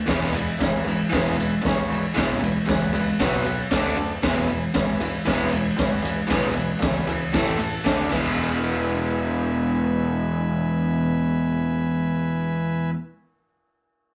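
A rough rehearsal-room recording in a wet studio reverb gives this rowdy, raw garage rock cut from a longer piece its immediate, scrappy feel. At 116 BPM in a straight 4/4 and in E major, a crunchy, double-tracked electric guitar sits up front with a picked, overdriven riff over chords that move through E, B5, D5 and A5. The raw drum kit is just as forward, with a high-tuned snare, a boomy kick, crash and ride cymbals, and a saturated, gritty tone with a rolled-off top. Beneath them, a fuzz-driven fingered electric bass stays dark and round in the background, while a buzzy vintage combo organ holds clean sustained chords above. The drums drop out at 8.2 s, and from 8.4 s the guitar, organ and bass carry a new section on their own until the guitar ends at 13.0 s.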